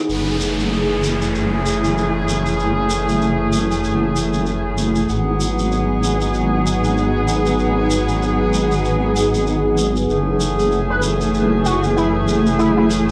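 A swung, loping glitch hop groove in 4/4 carries a playful, swaggering mood, with a heavy, saturated wobble bass up front beneath distant, roomy horn stabs, a grainy shekere, a brief electronic downlifter, a smooth analog pad and a blurred, evolving granular cloud pad in the background, all colored by a home cassette recording in a wet room, until an edgy, tearing sync lead enters at 10.9 seconds over the returning F#m9 chord.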